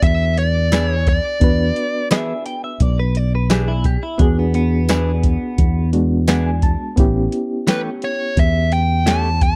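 A straight-eighth soul blues groove from a soft vintage rhythm box, with its deep kick, crisp snare, metallic hats and tambourine, carries this laid-back, soulful fragment, as a round, punchy fingered bass sits up front beneath a barky, reedy electric piano with fast tremolo and light overdrive that slips in a brief fill around 5.9 seconds, twangy clean guitar stabs bathed in spring reverb, a warm clean guitar line with analog chorus that enters at 2.1 seconds, and a dark, smooth overdriven lead guitar with slapback echo that opens the passage and returns at 7.7 seconds, captured in a dry, close 1970s-style studio sound over a move from E7 to A7.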